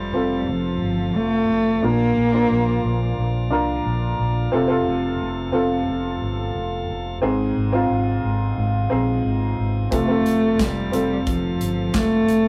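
A dark, woody cello carries the melody up front with a single player's bowed vibrato, stating a phrase until 3.2 seconds and returning at 9.9 seconds. This hopeful, uplifting piano-driven pop moves at 89 BPM in a straight 4/4 feel in F mixolydian, with chords shifting from F to Bb, back to F, then to Ab before settling on F. A worn, slightly detuned upright piano sits close and present as the accompaniment throughout, while a round, foam-muted fingered electric bass adds a dark, punchy, amped low end. Far beneath them, a tonewheel organ holds sustained chords with a piping, scooped tone and audible key click through a stopped rotary speaker. At 9.9 seconds, an airy, polished modern studio drum kit arrives with a punchy kick, medium-tuned snare, hi-hat and handclaps, lifting this short cut from a longer piece in a moderate booth ambience with rough rehearsal-room character and warm saturation.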